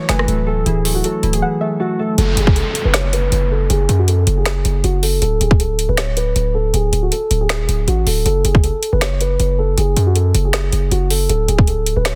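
A half-time trap groove drives this menacing hip hop excerpt, with a punchy, heavy 808-style bass carrying a noise layer and an electronic drum kit of hard-clipped kick, woody snare, metallic hats, finger snaps and rim clicks, both sitting up front. A mellow, intimate grand piano with audible action noise carries the melody through a low-pass filter and delay, while glassy digital keys and a soft, round pluck tucked in the background, both chorused, sound only until about 2.2 seconds, just after the drums drop out briefly at 1.4 seconds. An electronic downlifter and a filter sweep then arrive at 2.2 seconds, inside a dry, dense, heavily limited mix.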